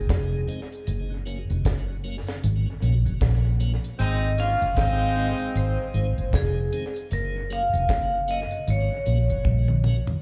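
This sounds like a live club gig heard through the venue's PA, with club reverb giving the whole mix a roomy glow. It is a sunny roots reggae excerpt at 77 BPM in 4/4, with a swung sixteenth feel, moving between Ab and Gb chords. A ringing, metallic vibraphone played with medium hard mallets and medium motor vibrato carries the melody through tape and slapback echo until 9.4 seconds. A dark, round, foam-muted electric bass sits up front beside a dry, tight-kicked drum kit with a high-tuned snare and rolled-off top. A piping, scooped tonewheel organ turns on a slow rotary speaker far back in the mix. A distant horn section with light vibrato adds a brief second line from 4.0 to 5.9 seconds, and the drums close on a fill at 9.4 seconds.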